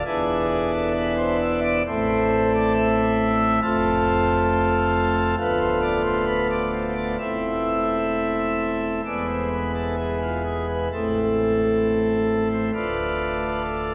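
A grave, dark chorale-style classical passage sounds through a wet cathedral reverb as a solo pipe organ, its full principal chorus in romantic voicing placed up front, moves at a rubato 66 BPM in 4/4 in A minor from an E5 through Am, F, Bm7b5/D, Am/E and E back to Am before turning to Dm at 12.7 seconds, spanning D1 to E5 in this 13.9-second cut from a longer piece.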